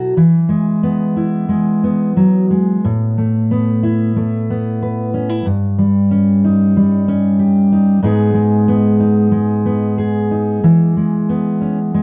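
A fingerpicked steel-string jumbo acoustic guitar plays alone and up front throughout this wistful, melancholic folk fragment of 12 seconds, its dark, full-bodied tone spanning G2 to B4 in a rubato 4/4 feel around 92 BPM, tuned to A4 = 444 Hz, moving through E, Asus2, D#7/G and G#m before settling back on E, all set in light reverb.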